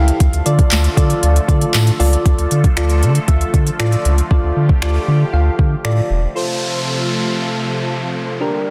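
A straight 4/4 groove at 117 BPM drives this carefree, summery dance-pop excerpt. An overdriven, up-front electronic R&B kit of soft kick, sharp snare, crisp hats, handclaps and finger snaps plays from 0.1 to 6.0 seconds over a deep, round, sidechain-pumped sine sub bass, mellow, gently pumping electric-piano-like synth keys with chorus and phaser, and a detuned sawtooth supersaw swell, also phased and pumping, that holds evolving chords moving from Dm to F. Alongside them are a brief, polished baby grand piano melody with tape echo sitting in the background, a very quiet jingly tambourine, and an up-front downlifter arriving at 6.4 seconds.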